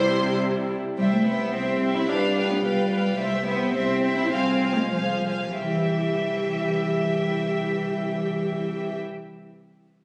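A close, intimate cello section carries the bass of this lively, cheerful classical-period orchestral fragment in C major, set in 2/4 at 90-111 BPM with a rubato feel that slows from 2.6 to 5.6 seconds. Softly bowed sul tasto violins hold a high melody in the background and a second line beneath it, while violas with warm vibrato accompany, double basses anchor a low C, and a dark, smooth-topped horn section sustains background chords over the C, G7/C and Fm/C harmony. The ensemble sits in a moderate scoring-stage reverb, heard as if captured on a phone in the room.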